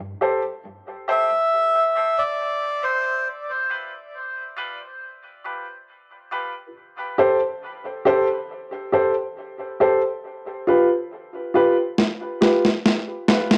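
A dark, mellow baby grand piano opens this dub reggae excerpt with short stabs from 0.2 seconds, filtered and soaked in dub echo and plate reverb, its tone softened by cassette tape. At 1.1 seconds a reedy, breathy melodica states a brief melody that ends by 3.3 seconds, its nasal, plastic-cased voice carrying the same echo and reverb. The tempo is a slow 69 BPM in straight 4/4, and the harmony in A minor moves between Am7 and G7, giving a spacious, deep mood. Filter sweeps shape the piano through much of the passage, and from 12.0 seconds a gritty, overdriven electronic snare with a sampler-style, compressed snap plays a fill up front. The sound is that of a home cassette recording in a moderate room, with the piano and melodica also sitting close and present, and the passage is cut from a longer piece.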